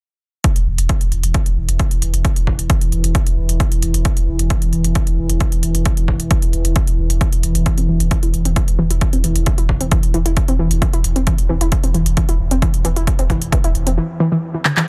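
Hypnotic and industrial, this driving peak-time techno excerpt at 133 BPM rides a punchy, up-front electronic kick and a techno kit of handclaps and smooth hi-hats. Beneath them, a round sine sub bass on E1 with tube saturation and a dark, wave-folded ambient pad drone on E3 both pump against the beat. At 7.8 seconds a warbling, lo-fi sawtooth pluck riff with chorus and delay enters, and a drum fill arrives at 14.7 seconds in a dense, heavily limited mix.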